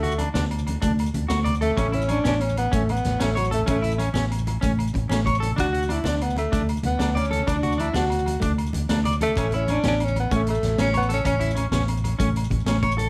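Highlife guitar band music in D major, joyful and sunny, moving at 126 BPM in 12/8 with a straight feel, cut from a longer piece. A mellow tenor saxophone leads up front with a jazz-style solo, its subtone, vibrato and scooped notes giving a smooth top until it stops at 11.6 seconds. Beneath it, a twangy, slightly broken-up electric guitar picks arpeggios through a tape echo, while a clean electric guitar picks accompaniment in the background with a subtle chorus, over a dark, round, punchy fingered bass that sits up front. A vintage acoustic drum kit with a high-tuned snare, tight kick and gritty, saturated character drives the groove, joined by very quiet low-tuned congas with a thick skin, grainy maracas and ringing agogo bells tucked in the background. The harmony rocks between D and A, and a moderate studio reverb gives the ensemble a cosy sense of room.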